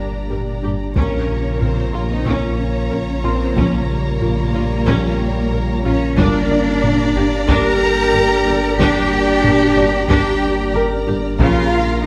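Violins carry a soft-edged, vibrato-rich melody from the opening moment, joined by a more distant second violin line, over a dark, organ-like pad with ensemble chorus and its own reverb, French horns holding chords in the background, a woody cello bass and a deep, thick saturated sub bass. This is a vast, futuristic cinematic cue blending orchestral and electronic scoring, moving at 92 BPM in a straight 4/4 in G minor, shifting between G minor and B-flat minor chords. A felt-muted upright piano adds an intimate, very quiet texture with audible action noise, while at 0.3 seconds a focused viola section enters with accompaniment, alongside a ringing, harp-like synth pluck playing mellow arpeggios and a rich double bass section reinforcing the low end. Heavy-stick taiko drums join at 1.0 second, kept very quiet in a live room sound. The cellos sit most prominently in the balance, and the whole ensemble is placed in a moderate scoring stage reverb. 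The passage is cut from a longer piece.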